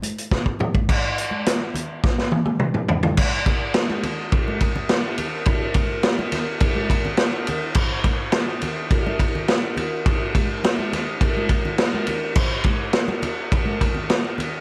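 Trippy and kaleidoscopic, this rock excerpt moves at 105 BPM in a straight 4/4. A vintage acoustic drum kit sits up front with a mid-forward, rolled-off sound, dark cymbals across crash, hi-hat and ride, a punchy kick, a medium-tuned snare and toms, and it plays fills at 0.3 and 2.0 seconds before a new section begins at 3.2 seconds. Ringing, high-tuned congas played with soft hands sit in the background in a small room, and light reverb gives the whole a gentle sense of space.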